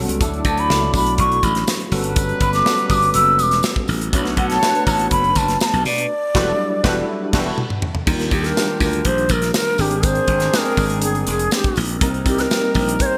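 Bright 1980s-style digital production with plate reverb frames this upbeat, glossy jazz-funk pop excerpt at 122 BPM: a breathy bansuri with vibrato carries the melody over a glassy, growly slap bass, a punchy studio drum kit with gated reverb, a clean tine electric piano with ensemble chorus, a distant horn section with delay and a jingly tambourine in the background, and a band accent from 6.1 s, capped by a drum fill, leads into Eb major at 8.1 s.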